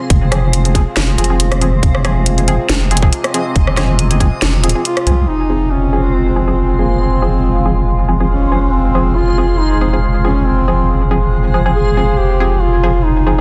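Dense, heavily limited and lightly reverberant, this meditative, heavy fragment of deep dubstep sits at 139 BPM in a swung half-time feel in F minor, anchored by a dark, compressed triangle-and-sine wobble bass with chorus and a resonant, ring-modulated drone whose bright overtones sweep across sustained chords. A reversed, granular swelling texture drifts dreamily alongside muted sawtooth dub chord stabs that pluck through a filter and trail into dub echo, while an overdriven, up-front electronic kick drum and a garage kit with a cracking snare, hi-hat and rim click punch through a small room. The kick falls away at 4.3 seconds and the kit at 5.2 seconds, as a close-miked, mellow duduk enters at 4.8 seconds with a folk-style solo of scooped notes and vibrato, echoed in dub fashion.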